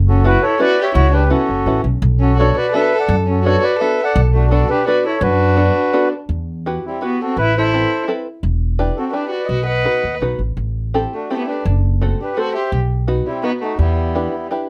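Close, detailed microphones and a light reverb give this nostalgic, whirling musette waltz excerpt an intimate clarity as it turns in a rubato 3/4 at 169 BPM, starting in B minor and moving to E minor at 6.3 s. The mellow accordion carries the reedy, round melody up front with a slapback echo, while the dark violin adds an airy second line with light vibrato and a soft attack, also touched by slapback echo. Beneath them, a fingerpicked open-back banjo supplies twangy, plunky accompaniment, and a pizzicato upright bass anchors the harmony with a woody tone.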